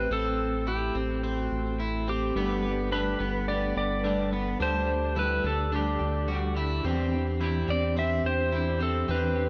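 A dark, clean lap steel guitar carries the melody from the first moment, its slide notes played with fingerpicks and trailed by digital delay, while a mellow, flute-like tonewheel organ holds sustained chords with key click, third harmonic percussion and a fast-spinning rotary speaker. Beneath them, a round analog bass with a deep, dark, up-front tone and quick attack anchors the low end, and an electric guitar at the edge of break-up picks twangy arpeggios through subtle chorus and delay. At 2.3 s a semi-hollow electric guitar joins in the background, its hollow-body accompaniment shimmering with harmonic tremolo and lush chorus. This dream pop passage, cut from a longer piece, moves at a straight 107 BPM in 4/4 and in C major, passing through Am7, Gadd9, Dsus4 and Cadd9/E. A moderate plate reverb bathes the mix, giving the whole 9.5-second stretch an ethereal, blissful glow.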